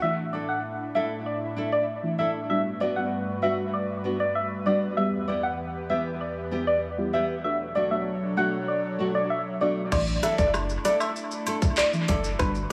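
A straight 4/4 dancehall groove takes shape in this hypnotic, tough passage cut from a longer piece, though the drums hold back until 9.9 s. Before then, a round, FM-style struck synth lead carries the melody up front with chorus, phaser, vibrato and dub echo, over dark, detuned chord stabs with a moving notch and filter sweep, and an airy, breathy pad that pumps under sidechain. A fingerpicked classical nylon-string guitar enters at 0.3 s with arpeggios soaked in dub echo, as the harmony moves from Asus4 through Gmaj7, Em and Bm7. At 9.9 s the chords return to Asus4 and an electronic island pop kit arrives up front, with a tight kick, metallic hats, handclaps, rim click, shaker and crash, all overdriven and echoed. A punchy sine sub bass with a pitch-drop attack joins at the same moment, while woodblock and cabasa sit close and dry in the background. The mix is echo-heavy, with spring reverb and a small room ambience.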